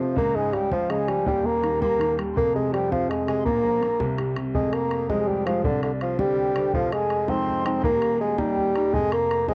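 A steady 6/8 jig rhythm drives this short Celtic folk excerpt, cut from a longer piece, with a dark yet lively mood. A dark bassoon carries the melody up front in a smooth, classical solo style, its sound colored by cassette tape. High above it, a mellow wooden flute plays a pure, tongued second line with vibrato, set back at a distance. A clear upright piano gives intimate, woody accompaniment with audible action noise, while a boomy, open bodhran joins at 0.2 seconds with the acoustic sound of a small room. The harmony moves through Db, Eb, F, Bb and C chords before settling into a minor, modal second half from 4.6 seconds, and the whole has the light reverb and homespun character of a home cassette recording.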